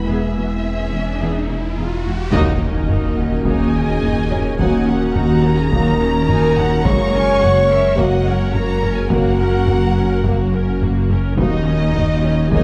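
A vast, tense stretch of hybrid orchestral and electronic film score, cut from a longer piece, sits in a moderate scoring-stage reverb at 106 BPM in Eb phrygian, where a lush, vibrato-rich violin section carries the melody over a second violin line, smooth violas, woody cellos and double basses in the background, a deep sine sub bass, a calm, detuned organ-like pad with ensemble chorus, and a very quiet, dark grand piano with audible action noise. An electronic riser builds from the start until a band accent and impact land at 2.3 seconds, where mellow French horns, a very quiet trombone section and a band-limited, vintage taiko ensemble played with hard sticks join in. The harmony moves from E to Ebm7, shifts to Gb at 6.9 seconds, and returns to Ebm7 near the close.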